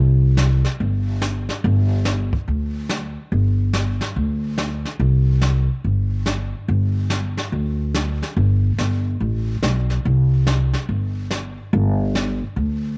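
A woody, up-front upright bass plucked on steel strings opens this cheerful, down-home excerpt of western swing country, playing a low line at 143 BPM in 4/4 with a loose swing in G major. From 0.4 s a jazz brush drum kit settles in quietly beneath it, with brushed snare, hi-hat and a boomy kick in a small, acoustic room. The dry recording keeps the pair close and plain, and the music moves into a new section at 3.3 s that runs to the end at 13.0 s.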